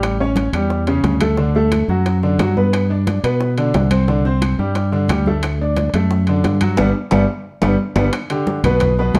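Festive and sunny, this brief salsa excerpt, cut from a longer piece, pairs a clear, boxy grand piano comping up front with a round, punchy fingered electric bass, moving through A7, D, G, Csus2, D and back to G. Underneath sit ringing congas played with soft hands, low-tuned bongos and woody claves in the background, and metal-shelled timbales, with the claves stopping at 8.8 seconds. The band hits an accent from 6.8 seconds while a drum fill runs from 7.3 to 8.1 seconds into a new section, all within a dark production and moderate studio reverb.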